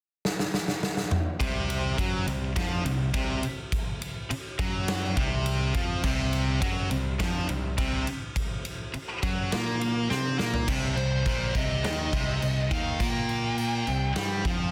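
A huge arena drum kit opens this menacing hard rock excerpt with a fill from 0.2 seconds, its punchy kick and medium-tuned snare sounding natural in a big room. At 1.4 seconds the band drops in at a driving, straight 104 BPM in 4/4: a bright, high-gain distorted guitar riff sits up front, joined in the background by a warm, overdriven semi-hollow guitar, while a direct, punchy picked electric bass anchors the low end. The riff rides on an F#maj7#11/B# harmony, and the drums work through crash, ride, snare, toms and kick before a second fill leads into a shift to C minor. At 11.0 seconds a dark, smooth overdriven lead guitar enters high above the riff to carry the melody. Light reverb and a dense, heavily limited modern master give the track a loud, compact finish.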